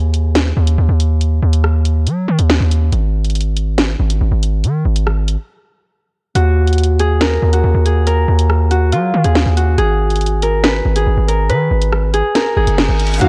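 Ominous and dark, this fragment of a longer drill track moves at 140 BPM in 4/4 with a half-time feel. An up-front, fingerpicked Celtic harp rings out briefly at the start, then returns at 6.4 seconds to carry the melody over a shift from Ebm to Abm7. Beneath it, a distorted 808-style bass dominates, its saturated sine tone with a noise layer hitting with a fast attack and decaying aggressively. The electronic drill kit adds bright hi-hats, a sharp snare and rim clicks. At 12.5 seconds an electronic reverse cymbal and downlifter lead into a distant, woody string section, bowed with vibrato, which enters with lush symphonic chords at 13.2 seconds just as the cut ends. The production is dark and warm, with a small-room ambience.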